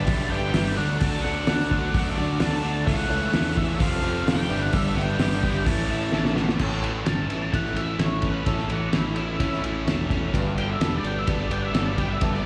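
Classic rock with a sunny, swaggering strut, captured live through a venue's PA in a recital hall with light reverb and cut from a longer piece, built on a muffled, cloth-damped drum kit with a fat snare and a growly, fuzzed fingered bass pushed up front. Three picked electric guitars stack the riff, one biting with slapback echo, one sludgy and very quiet, and a tight double-tracked one that drops out at 6.6 seconds. A reedy electric piano with fast tremolo and a shouting tonewheel organ on slow rotary fill in behind the octave-fuzz lead guitar, whose wah-soaked, echoing melody opens into a solo after a drum fill at 6.1 seconds.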